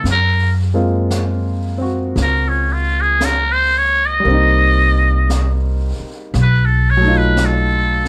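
A muted trumpet, buzzy and breathy with vibrato and scooped notes, carries a wistful, intimate melody up front over a concert grand piano with audible action noise and a woody pizzicato upright bass, while a distant brush kit with a high-tuned snare and hi-hat joins at 0.1 seconds in this dry, swung jazz ballad fragment cut from a longer piece.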